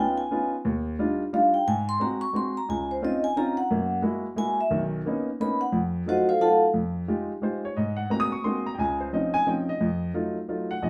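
A swinging 3/4 pulse at 177 BPM drives this late-night jazz fragment, cut from a longer piece, with the eighth notes leaning into a lilting triple-time swing. A vibraphone struck with medium hard mallets carries the melody up front as a solo from 0.0 to 6.7 seconds, its metallic, ringing tone shaded dark and smooth by a medium motor vibrato. Beside it, a warm baby grand piano with a natural, close presence supplies the accompaniment throughout, reaching from deep bass notes up into the high treble until 10.9 seconds. The harmony moves through rich extended chords such as Ebmaj9, Dbmaj9 and Bmaj9 before an F7b9 settles the music into F minor at 6.7 seconds, where the piano continues alone over Fm9, Ab9 and a return to F7b9. A short, wet studio reverb places the listener further back in the room, lending the pair a small-club intimacy.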